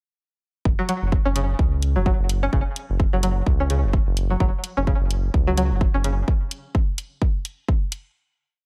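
Sparse and cool, this short minimal techno piece runs at 128 BPM in 4/4, with a 57% swing on the sixteenths and tuning set to A4 = 439 Hz. A punchy, up-front electronic kick holds a four-on-the-floor pulse from 0.7 seconds, joined by programmed closed hi-hats that carry the backbeat. Underneath, a round, deep analog bass, dark and sustained with a blend of sawtooth and sine, plays a dotted rhythm around F#, pumping through sidechain compression. A bright, twangy, string-like resonator pluck with a noise layer and a filter sweep repeats a 10-step sequence that drifts against the bar, treated with chorus, delay and the same sidechain pumping. The groove sits on an F#5 chord in a dry space, and after the bass and pluck stop around 6.2 seconds, the kick and hats carry on briefly, with the hats closing the piece at 8.0 seconds.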